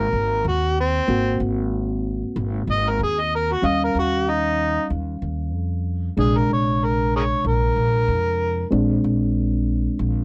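A reed electric piano, upright bass and overdriven harmonica all sound together at the start of this laid-back, soulful straight-eighth soul blues, cut from a longer piece. The amplified harmonica carries the jazz-style solo up front, its gritty tone marked by light vibrato, scooped notes and tongue slaps before it drops out at 8.7 seconds. Beneath it, the electric piano accompanies with a reedy, clean sound heard through its built-in speakers, while the pizzicato upright bass sits up front with a woody, thumpy tone from its gut strings. The harmony moves through rich ninth chords, from Ab9 to Eb9 at 3.6 seconds and Bb9 at 6.2 seconds. The close, dry 1970s-style studio sound carries only light reverb.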